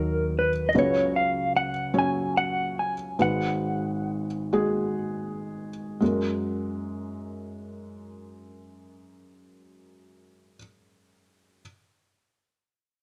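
Close, detailed microphones and light reverb frame this hopeful, tender folk fragment in 6/8, where a dark, clean electric guitar with tremolo carries the melody up front over a felt-muted upright piano with audible action noise, a woody pizzicato upright bass sounds only until 0.7 seconds, the pace slows until 6.0 seconds, and the piano continues alone from 5.0 seconds until the cut at 11.6 seconds.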